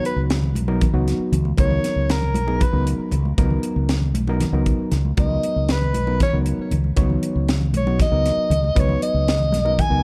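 This dark production, with light reverb, is a short cut from a longer electric jazz fusion piece that feels intense and driving in a straight 7/8. A soprano saxophone takes the melody as a solo throughout, up front with a smooth top, vibrato, scooped notes and a jazz-style delivery. Beneath it, an overdriven electric piano plays accompaniment through a combo amp, its reedy, barky, gritty tone treated with spring reverb over a C#13sus4 chord. The fretless electric bass sits up front, round and punchy with a direct-and-amped sound, while a polished drum kit of hi-hat, kick and snare, with a high-tuned snare and tight kick, rings out crisply in an airy studio room. Congas with a thick skin and soft hands stay in the background, adding high-tuned acoustic colour from a small room.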